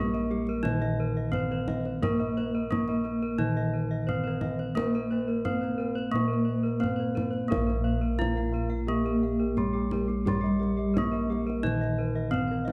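In a straight, unhurried four-beat pulse, this shimmering, serene Javanese gamelan passage, cut from a longer piece, sets a bright, horn-mallet bronze metallophone melody up front over a lower metallophone accompaniment struck with padded disc mallets, whose paired tuning gives soft, pulsing beats from the background. Arpeggios come from a second ringing metallophone and from round, airy bossed gongs played with padded beaters, while deeper bossed gongs carry the bass and a kendang, struck with soft hands, enters at 0.1 seconds with a deep tone. A moderate recital-hall reverb and a dark production wrap the bronze in a gentle glow.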